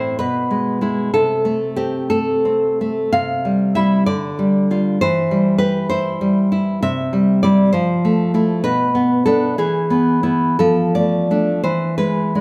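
A wet recital-hall reverb with a long 1.7-second decay surrounds a full-bodied, up-front nylon-string guitar, fingerpicked with a deep classical tone across a range from A2 to F5. This romantic solo piece, cut from a longer work, moves in a rubato 6/8 at roughly 54-68 BPM in dotted quarters, its melancholic, wistful harmony drifting from E/B and Am/C through C, Fmaj7 and Bm7. It settles on repeated turns to E, which the guitar reaches for the last time at 11.6 s.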